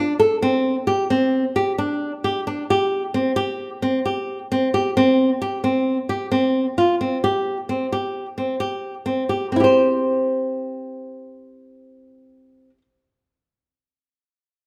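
A solo fingerpicked flamenco guitar with a warm tone, fresh strings and audible finger squeak sits up front in this playful, restless contemporary instrumental at 132 BPM in 5/4, moving from C5 to a rootless Fsus2 at 5.0 seconds and back to C5 at 9.5 seconds, captured by close, detailed microphones inside a moderate recital-hall reverb in a short cut from a longer piece.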